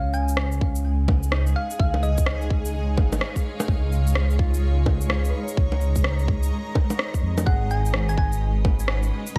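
A dark, detuned saw bass sits up front in this rainy, melancholic future garage excerpt, its deep, rumbling unison tone beating beneath a sidechain pump at 127 BPM in 4/4 with a 63% swing on the sixteenths. A shaker, rim click and bongos enter at 0.1 seconds, followed at 0.6 seconds by a tight electronic kick placed forward in the mix, both kits re-recorded in a large room. A granular cloud pad holds sustained chords throughout, its blurred, evolving shimmer breathing with the sidechain and carrying its own built-in reverb, while a clean, fingered electric guitar plays a compressed, mellow accompaniment in the background, colored by tape echo and the same pumping. A round, tine-like synth pluck resembling a thumb piano carries the melody with chorus and tape echo, sounding at the start and returning at 7.5 seconds as the harmony moves from C# to G#m. Near the close, a very quiet glassy texture of drifting overtones fades in at 7.9 seconds, adding calm sparkle to the digital ambience.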